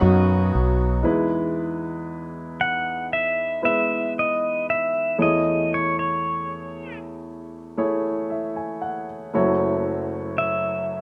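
Nostalgic and intimate, this acoustic folk-pop ballad sets a bright, fingerpicked pedal steel guitar melody with slide and volume swells over a woody upright piano full of audible action noise and long sustain, while an airy-bowed, earthy viola line, a reedy, breathing harmonium and a round, dark fretless electric bass sound together only in the first 1.0 s before the music settles onto Emaj7, Amaj7/E and F#m7 under light reverb.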